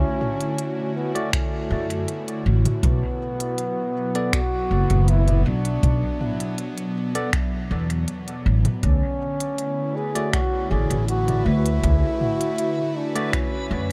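Meditative and hazy, this ambient dub excerpt opens with a mellow trombone melody, played with vibrato and a soft attack over a breathy, chorused pad, both carried on dub echo. An organic electronic kit of crisp hi-hat, finger snaps and toms arrives at once with its own dub echo, joined by a deep, tape-warm analog kick and a woody pizzicato upright bass sitting up front, while a bell-like tine electric piano drops echoing stabs in the background. At 9.8 seconds a reversed, granular swelling texture drifts in behind everything else before the excerpt fades out from 12.8 seconds, all within light reverb.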